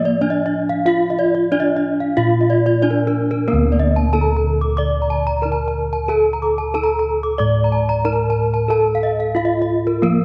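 Balinese gamelan in D pelog at 92 BPM, this hypnotic, shimmering fragment of a longer piece sets a bright, up-front bronze metallophone struck with a horn mallet on the melody over round, beating bossed gongs in the bass, while a second metallophone played with a wooden mallet ripples arpeggios above, its paired tuning ringing with shimmering beats, all heard through a moderate concert-hall reverb and a worn cassette-tape sound with warbly pitch drift.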